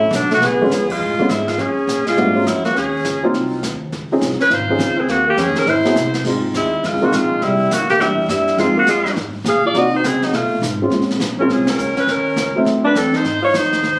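A bright, punchy alto saxophone carries the melody with vibrato and scooped notes alongside a mellow, subtone second alto, over a slightly detuned upright piano, woody pizzicato upright bass and a brushed jazz kit with dark cymbals and a boomy kick, in a relaxed, warm small-group swing-and-bop jazz clip at 206 BPM in Db major, marked by band accents at 0.9 and 11.6 seconds and a drum fill at 5.7 seconds, all heard through club reverb from a phone recording in the room.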